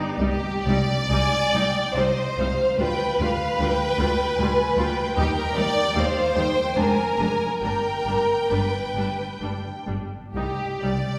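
Classical string orchestra music, this brief excerpt from a slow romantic movement in C minor moves in a rubato 3/4 at roughly 60-77 BPM, its mood melancholic and elegiac. A violin section carries the melody from 1.1 s, sitting high and up front with a smooth, even tone and steady vibrato, while a second violin section beneath it supplies a rich, focused line. The violas fill in the accompaniment with a lush, expressive sound, their vibrato and portamento heard from a more distant place. Cellos and double basses anchor the bass, the cellos soft in attack and set in the background, the basses focused with a smooth top. The harmony moves from C minor through a dominant seventh and a diminished chord to G before settling back on C minor at 10.3 s, and a wet hall reverb gives the bowed sections a spacious, resonant glow.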